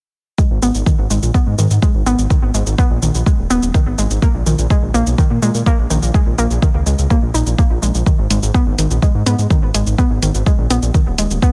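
Dark and dramatic, this short cut from a longer melodic techno track runs at 125 BPM in G# minor. A deep, tape-warm electronic kick drum sits up front, with bright, layered shaker and hi-hat pumping to the sidechain and a rumbling, detuned saw bass beating and pumping up front. Over them, a warbling, dusty lo-fi filter pluck plays arpeggios through chorus, tape echo and sidechain pumping, over chords moving from G#5 to A#m at 4.2 seconds and G#m at 8.1 seconds, in a dry mix with little reverb.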